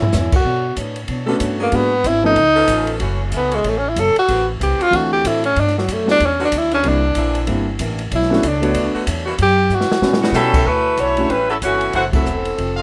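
A breathy tenor saxophone leads this joyful, swinging big band excerpt, its up-front solo full of scooped notes and light vibrato over a B minor progression at 188 BPM in 4/4. Beneath it, a woody pizzicato upright bass and an open jazz drum kit with dark cymbals and a boomy kick drive the swing, while a very quiet, boxy archtop guitar is picked throughout. A grand piano with audible action noise joins at 1.3 seconds alongside a bright, close-miked saxophone section holding sustained chords. After a drum fill near 10 seconds, the tenor solo gives way to a warm saxophone section carrying the melody with vibrato, and a mellow trumpet section adds stabs from 11.0 seconds before a band accent at 12.1 seconds. Moderate studio reverb surrounds a rough, demo-like mix, and the passage is cut from a longer piece.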